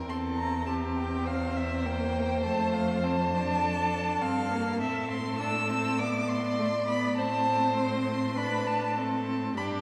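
Graceful and spirited, this quick classical-period movement for string quartet moves at 102 BPM in F major, a brief cut from a longer piece. Up front, a warm first violin carries the high melody with vibrato, soft attacks and expressive portamento, while a rich, focused second violin and a distant, expressive viola fill in the middle beneath it. A clear, close cello anchors the bass, and the whole quartet sits in the long, wet reverb of a church, whose 2.6-second tail lingers behind the bowed lines.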